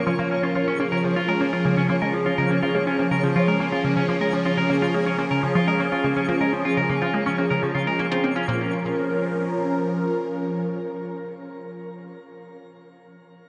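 Ambient, sequencer-driven space music in Bb minor at 123 BPM in a straight 4/4, this hypnotic, mysterious excerpt is cut from a longer piece and moves between Bbm and Db chords. A swirling, detuned analog pad sits up front with sustained chords, its phaser, chorus and moving notch giving it an evolving sheen, and it carries on alone after the other parts drop away near 8.7 seconds, holding until 12.1 seconds. Alongside it, a clean, picked semi-hollow electric guitar plays bright arpeggios through delay and shimmer reverb. A juicy, squelchy blip pluck built from square and sawtooth waves drives a resonant riff with fast attack and short decay, colored by phaser and delay, while a filter sweep runs across the synth arpeggio sound through the first 8.5 seconds. In the background, a twinkling granular texture adds sparkling, octave-up shimmer on a high Db. The production is dark and drenched in a huge ambient reverb with a long 7.4-second tail.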